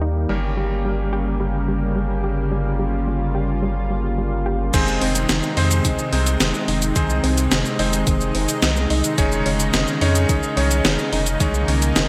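Synthwave with a moody, nocturnal feel, taken from a longer piece and set in a bright 1980s-style digital production with a moderate lush hall reverb. A thick, detuned unison pad holds sustained chords up front, chorused and pumping against the sidechain, while a round analog bass anchors the low end with a deep, dark tone that pumps the same way. An analog pluck spins sawtooth-and-square arpeggios in the background through chorus and digital delay, and a cutting, vintage electric grand piano adds clangy stabs with subtle chorus and delay. Over the opening stretch both the pad and the piano move through filter sweeps as the harmony sits on Gdim. At 4.7 seconds the music shifts to Ab/F as a thumpy, tape-flavoured electronic kick and a gated 80s digital drum machine enter, the latter up front with gated-reverb snare, hi-hat, shaker and crash. The harmony then settles on Dbsus2/F, and the kick drops out at 11.5 seconds while the other parts carry on to the end.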